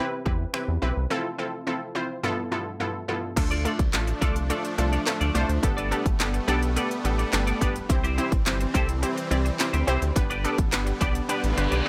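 Dance-pop in C major at 106 BPM, upbeat and summery, this excerpt opens with a punchy, detuned unison pluck pumping against a round analog bass and a house kit of punchy kick, cracking snare, crisp hats, snaps, claps and crash, breaks at 1.1 seconds, then at 3.4 seconds adds huge supersaw chords in the background and a twangy, chorused twelve-string electric guitar riff over Dm, Gadd9, C and G, with a reverse cymbal rising in at 11.5 seconds under light reverb.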